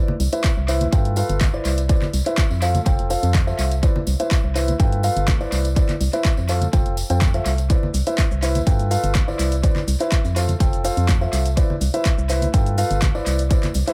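This euphoric, feel-good piano house excerpt opens at 0.0 seconds with a concert grand piano riff between E4 and G5, cut from a longer piece. The piano has a deep low end and short sustain, roughened by vintage 12-bit sampler grit, muffled by a low-pass filter, pumped by sidechain compression and trailed by tape echo. Bright congas and tambourine struck with hard hands sit in the background in a small room, while an up-front, organ-like FM bass with a hollow, percussive, fast-attack tone darkly holds the low end from F1 to G2 and pumps with the sidechain. A punchy analog drum machine adds tape-warm handclaps, hi-hat and shaker, and a layered electronic kick, re-recorded in a large room, lands up front from 0.4 seconds. At 124 BPM in straight 4/4 and C major, tuned to A4 = 444 Hz, the harmony cycles through Cmaj9, G13 and Fmaj7 in an echo-heavy mix with light reverb.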